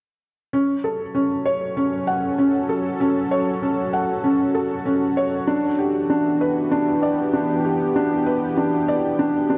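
Set in a straight 4/4 at 97 BPM and tuned to A4 = 442 Hz, this intimate, moving electronica excerpt opens at 0.5 seconds with a soft, felt-muted upright piano riff, mellow and vintage with short sustain and a touch of delay. At 1.0 seconds a thick, detuned sawtooth unison pad joins, holding slow-attack chords through chorus. Everything moves from F#m to Em7 at 5.5 seconds inside a lush hall reverb.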